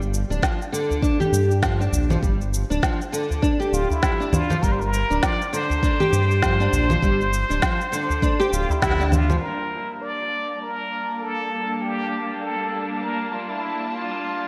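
Hypnotic and earthy, this organic downtempo excerpt moves at 100 BPM in G dorian with a swung sixteenth-note feel, opening on a G7sus4 chord. A round, mellow analog bass built from detuned sawtooth, sine and triangle tones sits up front with tube saturation and sidechain pumping. Around it, tape-toned electronic drums bring a deep kick, a woody snare, cabasa and congas re-recorded in a large room, while a deep, saturated udu adds acoustic weight. A dark, fingerpicked nylon-string guitar plays classical-style arpeggios with audible finger squeak, colored by analog chorus, delay and a low-pass filter. At 3.7 seconds a forceful plunger-muted trumpet enters with a punchy, wah-wah jazz solo and vibrato, trailed by diffuse ambient delay. After a band accent near 9 seconds, the harmony shifts to Gmadd9 at 9.4 seconds as a bright, intense symphonic string section joins the trumpet with sustained, bowed chords under a filter sweep, all drenched in a lush hall reverb that gives the mix a dreamy glow.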